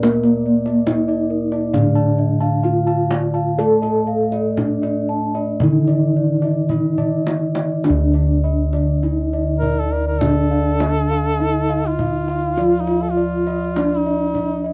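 In a straight four-beat pulse, this hypnotic, shimmering Javanese gamelan excerpt sets a ringing bronze metallophone melody with paired-tuning beats over a lower metallophone accompaniment, with soft, padded bossed-gong and metallophone arpeggios above and round, full bossed gongs carrying the bass, while a tight, vintage kendang plays a fill at 6.7 seconds and a mellow, folk-style duduk with vibrato and scooped notes enters at 9.6 seconds, the whole captured as a dry, close 1970s-style studio recording with light reverb.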